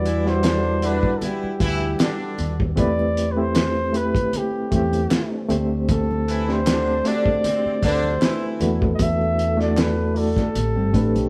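Silky and smooth, this lush 1970s-style soul groove, cut from a longer piece, sets a breathy, up-front flugelhorn melody with vibrato over a reedy electric piano with light overdrive and fast tremolo, very quiet mellow French horn chords, punchy horn section stabs that drop out at 8.8 s, a fingered electric bass, a muffled, gritty, cloth-damped drum kit with a fat snare, very quiet bright congas and crisp group handclaps, and a dark, clean electric guitar riff that slips in at 10.8 s, all in one lightly reverberant room.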